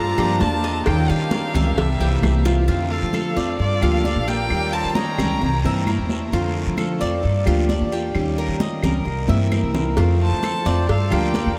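Cuban son in the guajira style at 132 BPM in F major, this danceable, warm fragment from a longer piece opens with a rich, smooth bowed violin melody shadowed by a mellow trumpet second line in the background, both drifting in tape echo before pausing and returning at 10.2 seconds. Bright, metallic double-stringed tres arpeggios and a boxy picked acoustic guitar with finger squeak ride over an up-front, thumpy gut-string upright bass, while ringing high-tuned congas, a raspy guiro and very quiet woody claves keep the groove, with round, low-tuned cowbell and bongos appearing only at the start and again from 10.0 seconds. The whole mix is dreamy and soaked in a huge ambient reverb, cycling through Gm9, Eb7, C7 and F6 chords.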